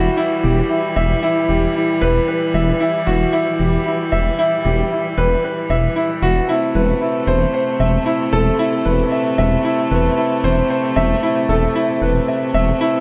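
Piano and strings electronica in E minor at 114 BPM, this cinematic, hypnotic excerpt moves in a straight 4/4 and is cut from a longer piece. A grand piano sits up front playing a riff between E4 and E5, its tone polished and present, with a delay trailing its notes. Beneath it, a detuned saw bass holds a deep, rumbling E1 with a beating, unison character and a fast attack, sustaining until 12.7 seconds. A string quartet, bowed with one player per line, lays smooth, even sustained chords between C3 and A3, their light vibrato giving a rich chamber colour that still feels distant. The harmony shifts from Emadd9 to Amadd9/E at 6.5 seconds, and a huge ambient reverb with a 4.9-second decay wraps the dark production in a spacious haze.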